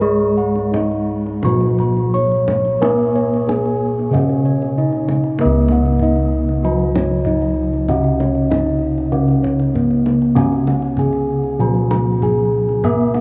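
Heard in a vast, echoing space, this serene Javanese gamelan recording is steeped in a long, huge reverb that lets every bronze tone hang in the air, and it is cut from a longer piece. A bronze metallophone carries the melody with padded disc mallets, its sound mellow, soft and dark. Beneath it, a second metallophone plays the accompaniment in a lower register; struck with a wooden mallet, its paired tuning produces shimmering beats. Bossed gongs spin arpeggios that sit up front, smooth and shadowy, while a deeper set of bossed gongs holds the bass with a round, beating ring. A kendang enters at 0.2 seconds, its soft hand strokes sounding deep and vintage in a band-limited tone, and the music moves into a new section at 5.4 seconds that runs to the end at 13.2 seconds.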